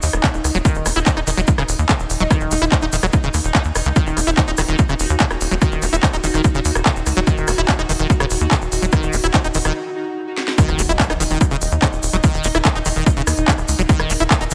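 A tight, punchy sequencer bass with a sawtooth bite drives this intense psychedelic trance excerpt at 145 BPM in Eb minor from the very start, together with a techno kit of cracking snare, smooth hats, handclaps and rim clicks, a grainy egg shaker in the background, and a pulsing gated pad of sustained chords with chorus, reverb and sidechain pumping. From 0.2 seconds an up-front electronic kick drives the groove beneath a squelchy, resonant acid riff treated with chorus, pumping and dub echo. A short break and drum fill lead to a drop at 10.6 seconds, where a very quiet electronic impact sounds over the full texture in a lightly reverberant space.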